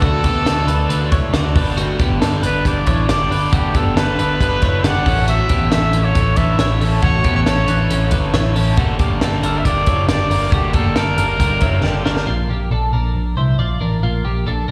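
Heard live through a venue PA with recital-hall reverb, this nostalgic, youthful jangly indie pop excerpt sets a clear, distant trumpet melody with light vibrato, slapback echo and digital delay over a raw, overdriven, lo-fi garage guitar, bright, compressed twelve-string electric arpeggios with subtle chorus and echo, a dark, foam-muted picked bass sitting up front, and a compact cocktail kit with a high-tuned snare and punchy kick. A drum fill at 11.8 seconds leads into a shift at 12.3 seconds; the trumpet drops out at 12.1 seconds, the garage guitar and drums fall away at 12.3 seconds, and the twelve-string and bass carry on alone to 14.7 seconds.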